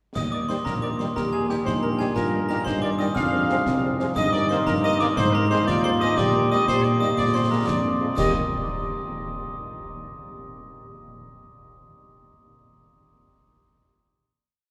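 A dark, tight trumpet section carries the melody in this proud, spirited military-style march for wind band, set in Eb major in a straight 6/8 at 120 BPM in dotted quarters. A sparkling, bell-like glockenspiel struck with brass mallets doubles the tune at the octave, while a soft-attack euphonium adds a warm counter-melody. A mellow, distant tuba anchors the bass on the beats with sustained low notes, and a very quiet French horn section fills in after-beat and sustained chords. A bright trombone section, also very quiet, adds short accented and held chords from 0.5 seconds, and the drums set a marching snare over a concert bass drum on the beat, with darker-toned clash cymbals. The harmony moves from Eb through Fm, Ab and a Bb7 before settling on a final Eb chord at 8.2 seconds, all bathed in the long, wet reverb of a church or concert hall.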